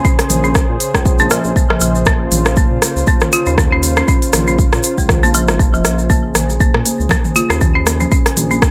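Hypnotic and spiritual, this afro house excerpt rides a swung 4/4 groove built on a deep, up-front electronic kick, an afro-pop drum kit with crisp hi-hat, rim click and toms, and a grainy egg shaker, while a smooth synth bass joins at 0.3 seconds under a single sustained Bbm9 chord. A warbling, detuned analog pad holds chords with chorus and sidechain pumping, and a woody, rustic marimba struck with hard mallets plays arpeggios through digital delay. Bright, hard-hand congas slip in quietly in the background at 6.5 seconds, all in a dry, close-sounding mix.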